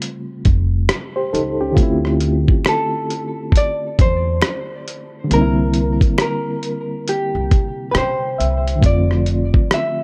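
Reflective and nostalgic, this lo-fi hip hop excerpt moves at a relaxed 68 BPM in 4/4 with a swung sixteenth-note feel, drifting through A7alt, Dm9, C9 and F6. A dark, clean hollow-body jazz guitar carries the melody with tape echo over a reedy, bright electric piano that shimmers with fast tremolo and cassette tape character. Up front, a muffled, pitched-down sampler-style drum kit with a thumpy kick, hi-hat and rim click carries 12-bit grit; a woody pizzicato upright bass plays from 0.5 to 9.5 seconds, and a very quiet finger snap joins at 0.9 seconds in a warm, dark production.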